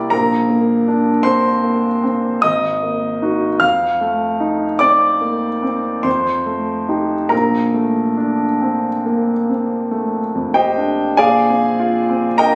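Impressionist classical solo piano, this short excerpt moves at a slow, rubato pace of 46-53 BPM in 3/4, with a dreamy, serene mood centred on Bb mixolydian. A grand piano carries the whole piece alone from 0.0 to 12.6 seconds, ranging from Ab1 up to F6. Its tone is clear and intimate, with a long sustain and audible action noise that keeps it natural and up front. The harmony drifts from Bbadd9 through Absus2, F7 and F9 to a Bbmaj9, returning to Bbadd9 at 11.2 seconds as the opening material comes back. A moderate recital hall reverb surrounds the instrument, which was captured on a phone from within the room.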